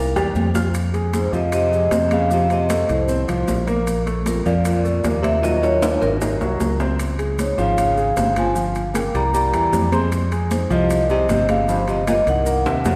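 Afro-Cuban jazz with a fiery, driving straight feel, this excerpt sets a growly, punchy fingered electric bass up front and a warm concert grand piano with audible action noise under a vibraphone melody that enters at 1.2 seconds, its metallic, ringing tone carrying a slow motor vibrato and a vintage, band-limited colour. A dark, breathy baritone saxophone plays an intimate subtone second line from 1.1 seconds, while damped, high-tuned congas sit in the background alongside close, dry timbales and agogo bells and grainy maracas. Drum fills mark the opening and the stretch from 5.4 to 7.0 seconds, and the harmony moves from Fm7 through Bbmaj7 and Dbmaj7 to Fm9, all set in a concert hall reverb.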